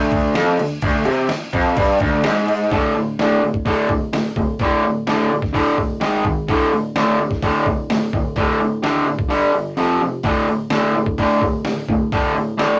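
A straight 4/4 pulse at 127 BPM drives this swaggering, raw garage rock excerpt, cut from a longer piece. A bright, overdriven, double-tracked electric guitar sits up front, picking a riff that moves from a D diminished chord into power chords on D, G# and G. Beneath it, a gritty, compressed, pitched-down sampler-style trip hop kit pairs a thumpy kick with a medium-tuned snare, hi-hat and crash, and its kick and snare drop out from 9.3 to 10.2 seconds, all captured in a rough rehearsal-room sound with tube saturation and a moderate booth ambience.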